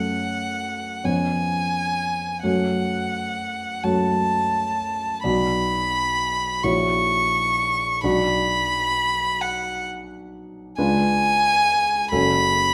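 In a rubato 6/8 at 43 BPM, this yearning, solemn romantic classical duo in F# minor sets a rich, smooth, even bowed violin melody with vibrato, close and up front, over a warm concert grand piano accompaniment with deep bass and a vintage, short-sustained tone, moving from F#m through Bm and C#7b9 back to F#m in a wet recital hall reverb across a 12.7-second passage cut from a longer piece.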